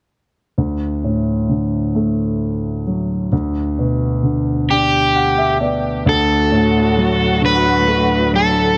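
This heartfelt, swaying pop excerpt opens at 0.6 seconds with a dark, mellow baby grand piano, up front and vintage in tone, laying down smooth accompaniment with long sustain over a D major chord that moves to G over D. The pulse is a slow 44 beats per minute in dotted quarters, in a straight 6/8 metre. At 4.7 seconds the piano plays a fill as an overdriven electric slide guitar enters up front with the melody, its fingered tone carried on a digital delay. From 6.0 seconds a studio string section adds warm, bowed sustained chords, expressive with vibrato, portamento and a smooth top, as the harmony settles back on D. Light reverb and a small room ambience frame the whole.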